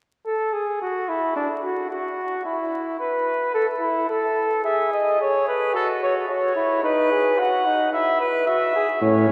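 A punchy trumpet carries the melody from 4.6 seconds in this elegant, lively classical canzona for brass ensemble, a short imitative passage cut from a longer piece at a steady 110 BPM in 4/4. A clear flugelhorn with light vibrato opens the second line alone at 0.3 seconds, and a mellow bass trombone enters only at 9.0 seconds as the passage closes. The horns sound distant and roomy, set back in a cathedral's long, wet reverb, with vinyl crackle over the recording.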